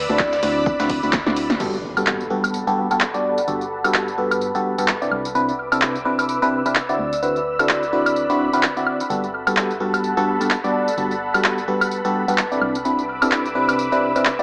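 Uplifting and joyful, this piano house excerpt in G major moves at 128 BPM with a swung 16th feel, led up front by a biting, barking FM electric piano riff with phaser, tremolo, dub echo and sidechain pumping over silky, bright analog strings that pump and take on a filter sweep from 1.6 s. A hollow, organ-like FM bass sits dark in the background, while a mellow soft-mallet vibraphone melody rings with dub echo. A dry, overdriven analog drum machine carries claps, hi-hats, snare, tambourine, woodblock and crash, joined at first by a punchy electronic kick until 1.2 s and a very quiet, gritty breakbeat kit until 1.6 s, when a background electronic impact arrives, the echo-heavy mix wet with spring reverb and a small-speaker sound.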